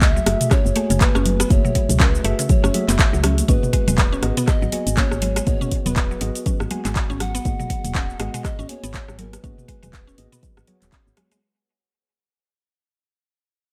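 Hypnotic and earthy, this afro house excerpt at 121 BPM sits in a swung 4/4 drop that fades out from 3.5 seconds over F#m9 moving to G#m7, with an airy, chiffy pan flute melody and mellow electric piano stabs both trailing dub echo, a round, woody FM bass and chorused mallet-like synth pluck arpeggios both pumping with the sidechain, a deep, tape-toned electronic kick up front, an afro-pop kit of metallic hi-hat, cabasa, handclaps, rim click and toms in a small room, and close, bright congas in the background, all in a dry mix.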